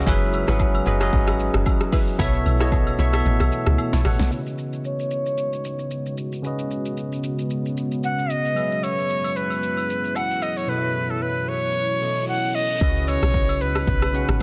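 Over a swung 4/4 groove at 113 BPM, this soulful amapiano cut opens with an overdriven deep house kit, its deep kick and metallic hats up front, a round, percussive log drum bass, background agogo bells and woodblock, and a punchy chord stab with chorus and delay that drops out at 4.0 seconds, all over bell-like tine electric piano and a dark, chorused pad that pumps under sidechain. From 4.9 seconds a breathy, reedy jazz flute with vibrato carries the melody through a long filter sweep on chords moving between Gb9sus4, Cb9sus4 and Db9sus4. A reverse cymbal at 12.0 seconds brings the log drum bass back for the final stretch, all set in light digital ambience and a dense, heavily limited master.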